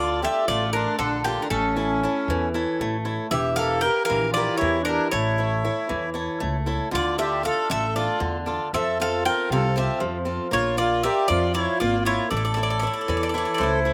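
Dramatic and driving, this short excerpt of Greek folk music races along at 233 BPM in 7/8, with a metallic, double-strung bouzouki carrying the melody up front over a reedy, close-miked accordion second line, a bright, boxy picked swing-style acoustic guitar with slapback echo, and a woody, thumpy pizzicato upright bass, all in D harmonic minor with chords moving from Dm through A, Edim, F and Bb, recorded outdoors with little reverb.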